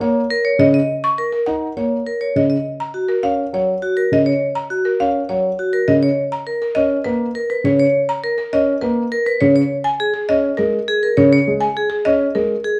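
At 102 BPM in a straight 3/4, this minimalist classical pattern piece has a hypnotic, bright mood and is tuned to A4 = 444 Hz. A buzzing marimba played with medium hard mallets carries the melody across Ab4 to Db6, its hardwood bars sounding woody and airy. Beneath it, a dark grand piano holds a mellow accompaniment between Db3 and Eb4, with long sustain. From 0.3 s a vibraphone with medium hard mallets and its motor off spins metallic, ringing arpeggios between Gb4 and Eb5, with a close, full presence. The harmony moves from a rootless Gb through a rootless Ebm7 and Cbmaj7(no3) before reaching Db5 at 9.9 s. All three instruments sit up front, and a moderate large-studio reverb lends space around the dry mallet tones in this short excerpt cut from a longer piece.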